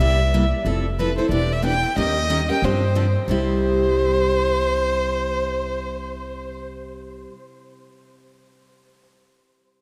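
A close, up-front violin carries the melody in this playful, charming snippet of acoustic string swing, its single bowed line smooth and even with a gentle vibrato. Beneath it, a picked steel-string acoustic guitar supplies warm accompaniment with an auditorium-like body, while an upright bass with gut strings adds a woody, dark, thumpy pizzicato foundation. The tune moves at a brisk 183 BPM in 4/4 with a light swing on the eighth notes, settling in C major as the harmony drifts through Fmaj7, Em7 and Eb7 before resting on G7sus4 and returning to C. The violin stops at 6.7 seconds, leaving guitar and bass to ring on briefly until the guitar finishes at 7.3 seconds. The whole performance sits in a vast, echoing space with a long cathedral-like reverb that gives the trio a lingering, airy wash. Cut from a longer piece, it offers just a quick, charming glimpse of the tune.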